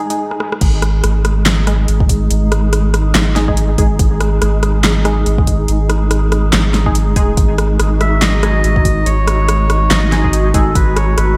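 Cavernous and meditative, this deep dubstep passage, cut from a longer piece, moves at 142 BPM in a half-time 4/4 with a swung sixteenth-note feel, built around a G#5 chord. A cloudy, granular pad blurs sustained chords from the start while a muted, detuned sawtooth chord stab, thickened by analog chorus and dub echo, decays alongside it. After a brief drum fill, the drop lands at 0.6 seconds, bringing in a round, soft sub bass on G#1 that sits up front with tube saturation, alongside a deep electronic kick. The deep house kit adds a fat snare, metallic hats, handclaps, rim clicks and crash cymbal, all with a tape-warm, layered character and studio reverb. At 8.0 seconds a reedy, breathy melodica enters with dub echo, its nasal, dark tone floating over the dreamy mix, which is soaked in a lush hall reverb.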